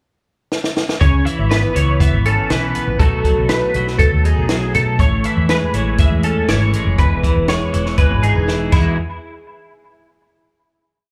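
Heard live through a club PA with club reverb, this brief, playful and bright math rock and midwest emo piece at 120 BPM opens with a drum fill on a compact cocktail kit with a high-tuned snare and punchy kick, then from 1.0 s two bright, twangy twelve-string electric guitars play a picked ostinato with subtle chorus and a rolling fingerstyle arpeggio with ensemble chorus and analog delay, both with slapback echo, over a dark, round hollow-body bass riff, moving through C#m7, B7, Amaj7 and Emaj7 to an Emaj9 before the final hit at 9.0 s.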